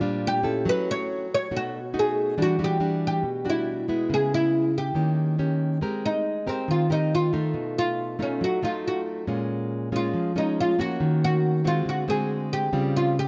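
A woody, double-strung fretless oud carries the melody over fingerpicked, full-bodied nylon-string guitar chords with audible finger squeak, both up front, in a sunny, breezy bossa nova at 139 BPM, cut from a longer piece, that settles into Ab major at 5.8 seconds, where the plectrum-plucked oud takes a solo over rich jazz chords such as Abmaj9 and B7#11 through a dark production with light reverb.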